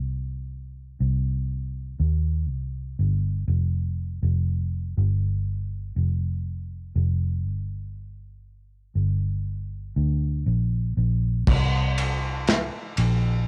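Melancholic and emotional, this slow pop ballad at 60 BPM in 4/4 opens with a dark, round, foam-muted electric bass played alone and up front, moving between F1 and Eb2. At 11.5 s a modern studio drum kit joins with punchy kick, medium-tuned snare, ride and crash in a pumping room sound colored by cassette tape, playing until 13.2 s, just before the bass stops at 13.5 s. The dry home cassette recording keeps both parts close and intimate in this short cut from a longer piece.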